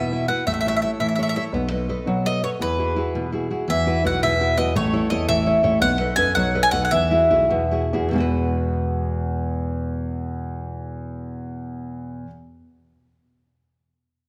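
A lilting 6/8 sway at 89-113 BPM, slowing between 5.8 and 8.1 seconds, carries this lively, romantic Italian folk serenade in E major, cut from a longer piece, where a round, double-strung picked mandolin sings the melody up front until 7.7 seconds over a full-bodied, fingerpicked classical nylon-string guitar and the mellow, boxy deep bass of a dark concert grand piano, both playing on to 12.3 seconds through chords moving from A and B7 to Eadd9 and Esus2, all set in a moderate concert hall reverb.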